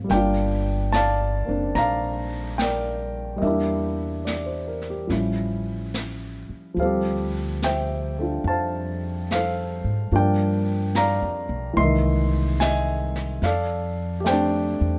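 Jazz ballad at a relaxed 72 BPM with a gentle swing feel, tender and late-night in mood, heard as a 15-second excerpt from a longer piece. An intimate grand piano, close and up front with audible action noise and short sustain, carries the accompaniment over a woody, thumpy pizzicato upright bass, while a brushed drum kit of snare and hi-hat, natural and small-roomed, sits further back. Light reverb softens the blend as the harmony moves from Gm9 through Em7b5, A7b13, Dm11 and Gm7 to a closing C7alt and F69.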